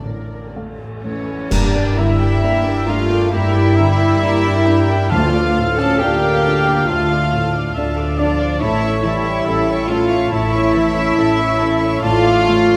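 Bathed in a wet recital-hall reverb, this bittersweet, moving cinematic excerpt for orchestra in D harmonic minor drifts at a rubato 68 BPM in 4/4, with a close, floating violin section carrying the melody sul tasto over a second violin line, a mellow grand piano in the background, lush, woody violas, and pure, soft-attack cellos and double basses below. A flute, a clarinet and distant French horn chords join at 1.0 s, dark clash cymbals with concert bass drum strike a brief accent at 1.5 s, a cor anglais with light vibrato enters at 3.3 s, and timpani sound briefly as the harmony moves from Gm through Dm to A and settles back on Dm/A.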